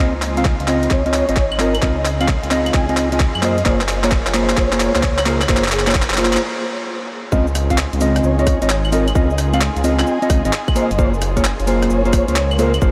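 Bouncy and sunny, this two-step UK garage passage, cut from a longer piece, swings at 131 BPM in Db major. A rumbling, detuned saw bass sits under clean, fingered electric guitar stabs in tape echo, while a veiled, muted violin section holds sustained chords in the background with sidechain pumping and a low-pass filter. A gritty, pitched-up breakbeat kit of cabasa, claves, handclaps, hi-hat and rim click runs a drum fill across most of the build-up, joined by a tight, layered electronic kick at 0.5 seconds, and a breathy flute-like synth lead carries the melody through ensemble chorus, tape echo and a filter sweep before a short break at 6.4 seconds gives way to the drop at 7.3 seconds, the Dbmaj9 and Gbmaj9#11 chords alternating in a dreamy mix soaked in huge ambient reverb.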